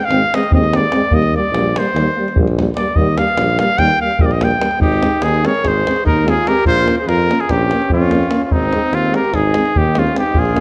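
A warm, lightly vibrato trumpet leads up front through this wild, virtuosic Balkan brass band fragment in 9/8, over two dark, soft-attacked euphoniums in the background, a smooth-topped tuba bass and a tight acoustic davul, with a mellow alto saxophone adding a second line from 4.8 seconds, the brass and saxophone all in a classical style within a moderate concert hall reverb.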